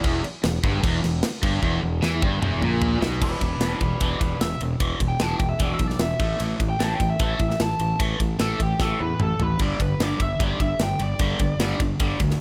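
Hard rock at 150 BPM in E minor, this driving, menacing excerpt opens with a dense wall of picked guitar riffs over a punchy, growly fuzz bass and a tight metal drum kit sitting up front with bright cymbals and a tight kick. The biting, double-tracked overdriven guitar and the tight distorted guitar both play in the background for the first 3.2 seconds, alongside a bright semi-hollow guitar whose riff, colored by phaser, carries through the whole passage. A drum fill at 1.6 seconds leads into a solo from 3.2 seconds, where a dark, nasal lead guitar with a parked wah and slapback echo takes the melody up to A5. Beneath it the harmony moves from E5 to A5 and then to G5 at 9.6 seconds, when the tight distorted guitar returns. A small room ambience surrounds the parts, and the passage is cut from a longer piece.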